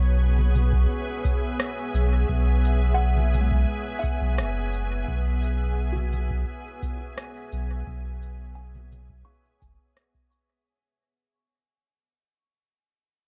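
A straight 4/4 groove at 86 BPM carries this spacious, hazy ambient dub excerpt on C#m7, with a dry, deep electronic kick set in the background and a tape-colored electronic kit of cabasa, rim click and toms sent through dub echo. A round, sine-toned sub bass sits up front beneath a pure, detuned organ-like pad with slow attack, ensemble chorus and its own reverb. A woody, hollow kalimba enters at 2.9 s with soft arpeggios trailed by dub echo, and the passage fades out from 3.2 s onward in a close, mostly dry room sound.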